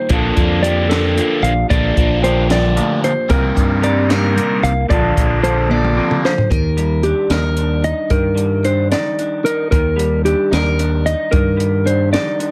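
Math rock and midwest emo in a wistful, intricate 6/8 at 75 BPM, this excerpt pairs dark, clean arpeggios on mellow electric guitar with lo-fi, slightly broken-up accompaniment from an electric guitar through a small old amp bathed in analog chorus, while a crunchy, double-tracked overdriven guitar with phaser carries the riff until 6.3 seconds, a bright, punchy fingered bass sits up front, and a compact cocktail kit with a high-tuned snare and rolled-off top plays a fill into the second section at 6.5 seconds, moving from Bbmaj7 and Cm11 to Ebmaj7 under light reverb.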